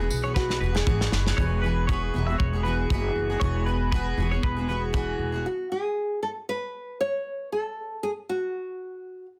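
A fingerpicked nylon-string guitar with finger squeak and plate reverb carries the melody in this easy-going, sunny acoustic pop excerpt, set over a double-tracked, full-bodied jumbo steel-string acoustic guitar, a growly, woody pizzicato upright bass, a loose small-room indie kit of tight kick, soft-clipped snare and tambourine with a drum fill at 0.4 seconds, and twangy, chorused twelve-string electric arpeggios, until the others drop out by 5.5 seconds and the nylon-string guitar plays alone under a dense, heavily limited master.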